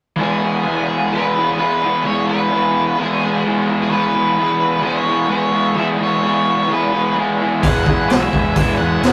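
A rough rehearsal-room recording with moderate reverb captures this rowdy, swaggering garage rock cut from a longer piece at 129 BPM in E major, where a dark octave-fuzz lead guitar carries the melody over a bright, double-tracked crunchy overdriven guitar riff from 0.2 seconds until, at 7.6 seconds, a buzzy combo organ with light vibrato, a growling overdriven picked bass and an up-front, saturated garage drum kit with a high-tuned snare and boomy kick come in together.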